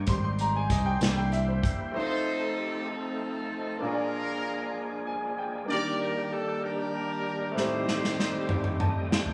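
A brilliant baby grand piano opens this slow, jubilant gospel excerpt in 6/8 over a gritty, overdriven tonewheel organ with slow rotary and chorus vibrato, joined briefly by a growly fingered electric bass, an acoustic drum kit with a tight kick and a jingly tambourine in the background, before a punchy horn section takes up the soulful melody at 2.0 seconds, with piano fills and a drum fill returning at 7.6 seconds and a closing organ fill, the band heard live in a wet stone room.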